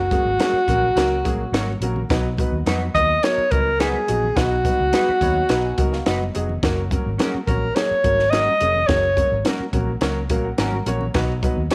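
Lightly reverberant, this joyful excerpt of uptempo 1960s-style soul at 106 BPM in F# major features a breathy, up-front alto saxophone carrying a smooth jazz-style melody with scooped notes, light vibrato and slapback echo until 9.4 seconds, over a round, foam-muted electric bass with transformer saturation, a dry cocktail drum kit with a punchy kick and high-tuned snare, very quiet thick-skinned congas, mellow clean guitar stabs with analog chorus in the background, and a dark, woody upright piano that adds fills at 4.9 and 10.0 seconds.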